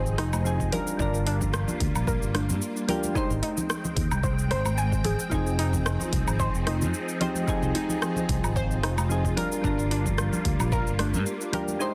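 Relaxed and smooth, this short sunset chillout clip cut from a longer piece swings gently in 4/4 over Fm7, Gm7 and Abmaj7 chords, with mellow chorused electric-piano-like synth keys, a silky vintage string machine under phaser and ensemble chorus, dark round pluck arpeggios with delay, a punchy fingered electric bass, a layered deep house kit of hi-hat, rim click, shaker and woodblock with a clipped snare, ringing congas set back in the mix, and a punchy electronic kick entering at 0.6 seconds, all in a light reverb and a dense modern master.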